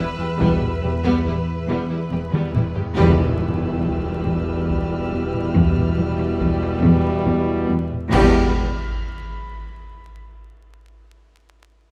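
An ominous, eerie stretch of suspense film score in a slow 3/4 opens on a dark E minor bed of bowed strings: a focused violin melody over a warm, smooth-topped second violin line, a distant viola, a cello riff and low cello and double bass, with a high shimmer of violins and a calm, detuned organ-like drone carrying ensemble chorus and its own reverb. From 0.4 seconds a clear trombone section and mellow French horns hold sustained chords while a close, dry taiko ensemble struck with heavy sticks joins bright cymbals, tam-tam and concert bass drum, moving through a drum fill into a band accent and impact at 3.0 seconds. Quiet electronic sub drops and impacts mark the later hits, and the whole sits in a moderate scoring-stage reverb with detailed close miking and vinyl crackle.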